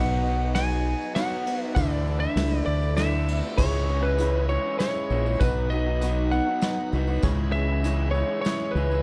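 Folk rock and heartland rock in a warm, open-road 3/4 at 99 BPM, where a dark, slightly broken-up lead guitar carries the melody up front over a round, direct fingered bass, a shimmering octave-doubled twelve-string acoustic, a twangy lo-fi electric riff from a small old amp, a very quiet worn and slightly detuned upright piano, a piping tonewheel organ on slow rotary holding sustained chords, a jingly vintage tambourine from 0.3 seconds, and a soft brush drum kit with punchy kick entering at 0.6 seconds, all set in a small room with light reverb as the chords move from B through Dsus2 to C#m.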